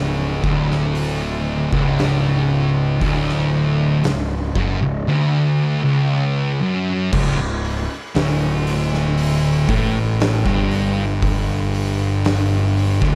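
A dark, close-sounding mix with small room reverb frames this ominous, hypnotic stretch of stoner and doom metal, cut from a longer piece. A thick, distorted fuzz guitar riff sits up front over a growly, bright overdriven picked bass, while a second fuzz guitar riffs in the background until 7.1 seconds, as the harmony moves from Dmaj7/C# to C#5. An oversized low-tuned acoustic kit joins at 0.4 seconds, with a boomy kick, fat snare, hi-hat and crash, all gritty and saturated.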